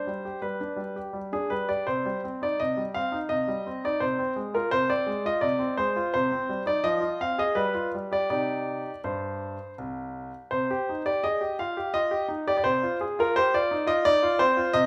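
In a straight triple metre, this dramatic yet elegant classical-period sonatina, cut from a longer piece, features a solo grand piano with a brilliant, polished, up-front tone, audible action noise and long sustain, ranging from C2 to F5 over harmony that moves from G through C minor and F minor to a G7 that resolves to C minor, with a new section arriving at 10.5 seconds, heard in a moderate recital-hall reverb.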